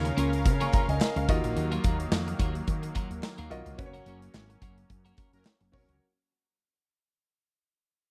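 A dry, close small-room sound frames this glossy, romantic fragment of 1980s-style pop at 108 BPM with a light sixteenth-note swing, where punchy big rock drums with tambourine and very quiet crisp handclaps join a growly, woody fretless bass, a clear short-sustain grand piano, a nasal brassy analog pad with chorus and a clean twelve-string electric guitar riff with tape echo over Bbm/Db, Ebmadd9 and Gb, as the band accents from 3.8 seconds, fat detuned synth brass stabs enter at 5.3 seconds, and the whole fades out.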